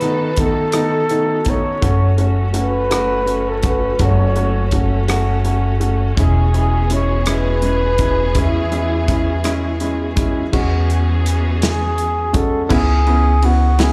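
Romantic and tender, this six-eight pop ballad in E major moves at an unhurried 55 BPM, cut from a longer piece and heard as a live gig through the venue's PA with club reverb and small room ambience. A breathy, whispered flugelhorn with light vibrato and scooped notes carries the melody over a soft, felt-muted upright piano, both touched by slapback echo, while a lush bowed string section holds sustained chords until 12.7 seconds and a natural country drum kit with dark cymbals and a tight kick keeps time. A woody, pizzicato upright bass sits up front from 1.8 seconds, and the muted piano steps forward for a short solo from 10.5 to 12.7 seconds before the harmony settles on C#m7.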